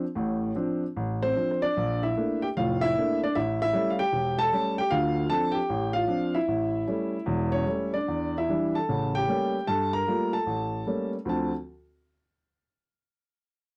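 A woody, intimate upright piano with audible action noise and long sustain carries this late-night, swinging solo jazz excerpt in D minor at 151 BPM, moving with a swung, rubato feel through chords such as Dm7, Bbmaj7 and A7b9 until it stops at 11.5 s, heard up front in a dry, close 1970s-style studio sound with light reverb.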